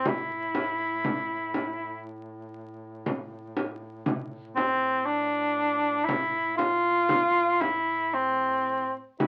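Longing and solemn, this short cut from a longer Caucasian folk lament in a rubato 3/4 sets a dark, smooth-topped cor anglais melody with light vibrato up front over a low, mellow duduk drone with scooped notes and a small, bright frame drum played with soft hands, entering at 0.1 seconds, all heard through moderate studio ambience and the crackle of a very old 78 rpm record.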